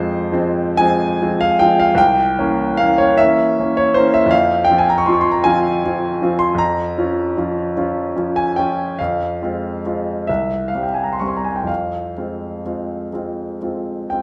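Yearning and melancholic, this fragment of a romantic classical nocturne in F minor unfolds in a slow, rubato 6/8 at 40-55 BPM, with a solo grand piano spanning C2 to Db6 heard clear, intimate and up front, its polished tone carrying long sustain and audible action noise as it moves through Fm, C7b9 and Bbm/F harmonies inside a wet recital hall reverb over 14.2 seconds.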